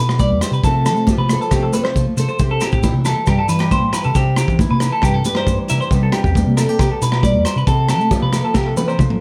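A moderate studio reverb gives this carefree, danceable highlife guitar band clip an open, lively sound at 136 BPM in C major, with a bright, twangy clean electric guitar up front picking arpeggios through a phaser and slapback echo over a fingerpicked nylon-string guitar's warm classical accompaniment and a round, amped hollow-body bass. A gritty, saturated breakbeat kit with a tight kick and rolled-off top sits close in the mix, while grainy, mellow maracas add texture and high-tuned congas play from further back, joined at 2.6 s by ringing, distant agogo bells. The chords move between G, F over C and C, and the drums close with a fill at 8.6 s.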